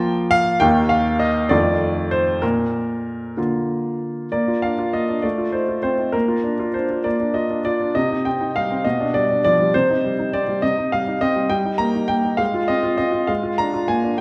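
A steady, straight six-eight pulse carries this graceful, playful classical-period piano sonatina, a passage cut from a longer piece. A solo grand piano plays throughout, sounding clear, polished and intimate, placed up front and present, with the noise of its action audible beneath the notes. The opening phrase settles around the home chord before a second, longer section begins at 4.3 seconds. That section turns toward minor colour at 8.0 seconds and moves through shifting harmonies before closing on a seventh chord at 13.3 seconds. The piano spans a generous register, from deep bass notes to a bright upper line, and a wet recital hall reverb gives it a spacious, lingering tail.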